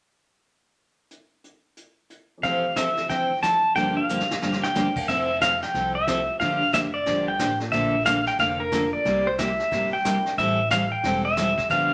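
Country western swing with a swinging, down-home mood, taken from a longer piece at a brisk, lilting shuffle. A vintage brush drum kit opens alone at 1.1 seconds, its brushed snare, dark cymbals, hi-hat and tight kick sitting in a small, rolled-off room sound. At 2.4 seconds the pedal steel guitar enters up front with the melody, clean, compressed and fingerpicked, with slides and volume swells, while a bright, fresh-stringed acoustic guitar and a very quiet, polished upright piano with long sustain fill in the accompaniment. After a drum fill, a woody, thumpy upright bass with gut strings joins at 5.1 seconds, and the harmony moves through lush seventh and ninth chords such as Fmaj9, Gm7, Bbmaj7 and C9. A wet studio reverb gives the ensemble a roomy glow behind the steel's singing lead.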